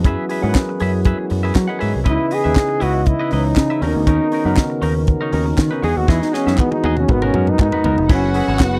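A clear, forceful trombone solos up front with light vibrato and scooped notes over a sultry, danceable disco groove at 119 BPM, driven by a tight funk drum kit with a high-tuned snare and a round, punchy picked bass. A bright, compressed semi-hollow guitar adds accompaniment, a tine electric piano and a mellow French horn section hold the background, and hollow group handclaps join at 0.5 seconds, all moving through lush ninth chords. A drum fill arrives at 6.1 seconds, and a dark, bowed string section enters at 8.1 seconds, all captured in a dry, close 1970s-style studio sound.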